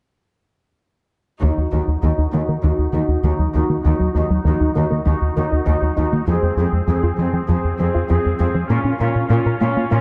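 Futuristic and vast, this cinematic passage in Eb dorian moves at 99 BPM in a straight 4/4, building steadily as a filter sweep opens up across its length. All four parts enter together at 1.4 seconds: a rubbery, hollow square-wave bass sits up front with a bouncy, resonant riff, while a tight sequenced synth runs driving arpeggios in the background, its detuned sawtooth tone colored by chorus, phaser, a low-pass filter and digital delay. A lush symphonic viola section carries the accompaniment up front, bowed with smooth, even vibrato, and a rich cello section supports the low end beneath it. The harmony moves from Ebm to Fm at 6.3 seconds and on to Bbm at 8.7 seconds. A moderate concert hall reverb lends the strings and synths a spacious setting, and the passage is cut from a longer piece.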